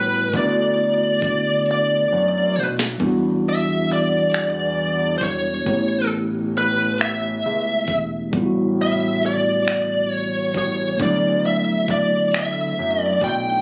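Up front, a smooth, bright overdriven lead guitar carries the melody from B4 to G5 with a slapback echo, giving this slow six-eight R&B excerpt a yearning, late-night mood at 45 BPM. Beneath it, a mellow tine electric piano holds the accompaniment cleanly, as if heard through built-in speakers, while a fat analog bass, thick and saturated with a detuned sawtooth edge, ring modulation and a filter sweep, anchors the low end. A produced electronic drum kit enters at 0.3 seconds with a knocking kick, sharp snare, metallic hi-hats and finger snaps, sitting up front and playing a fill between 1.7 and 3.0 seconds. The harmony moves from D6/9 through Em9, A9 and A13 before returning to D6/9 at 11.0 seconds. Recorded on a phone in the room with light studio reverb, the fragment is cut from a longer piece.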